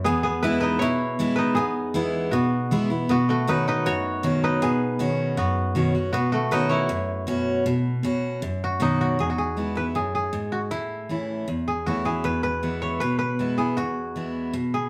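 A straight, steady 4/4 pulse drives this brisk country excerpt, cut from a longer piece, with a nostalgic, sunny mood. A koto carries the melody from start to finish, its plucked fingerpick tone woody and dry and placed up front. Beneath it, a picked steel-string jumbo acoustic guitar supplies the accompaniment, bright and full-bodied, and it sits slightly louder than the koto. The harmony rests on E and Badd9 in the opening stretch, then moves through E, A and back to E when a new section begins at 9.2 seconds. A wet studio reverb lends the room a sense of being heard from further back, giving the pairing a sunlit feel.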